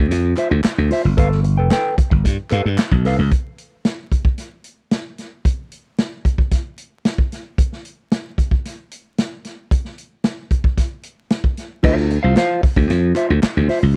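A growly, bright slap bass anchors this cool, funky 112 BPM groove in D dorian, joined by a dark, clean electric guitar with harmonic tremolo on Dm9 and G9 chords, a punchy vintage drum kit with dark cymbals, and distant, crisp group handclaps in the background, with the drums playing alone from 3.3 to 11.8 seconds before the full band returns, all in a dry, close 1970s-style studio sound with vinyl crackle, cut from a longer piece.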